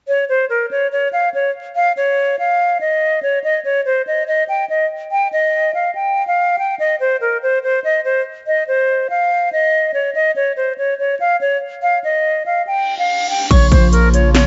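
Set in a half-time 4/4 trap feel at 143 BPM, this brooding, dark hip hop excerpt opens with a lone hollow concert flute carrying the melody between Bb4 and G5, its pure tone shaped by vibrato and tongued notes, with a trailing delay and placed up front. For the first stretch the flute stands unaccompanied by chords, until an electronic reverse cymbal sounds from 12.8 seconds. At 13.5 seconds the full beat lands on a Bb minor chord. An overdriven trap kit with hard-clipped kick, sharp snare, metallic hats, crash and handclaps, re-recorded in a small room, hits alongside a deep, long 808-style sine bass on Bb1 with a fast attack that decays. A bright, detuned pad blending square, triangle and sine waves with chorus and phaser sustains chords from Db3 to F4, while a gentle FM synth bell on Db6, treated with chorus, phaser and delay, rings in the background. Light reverb, a digital ambience and vinyl crackle frame the mix, whose top end is dulled above 7.8 kHz.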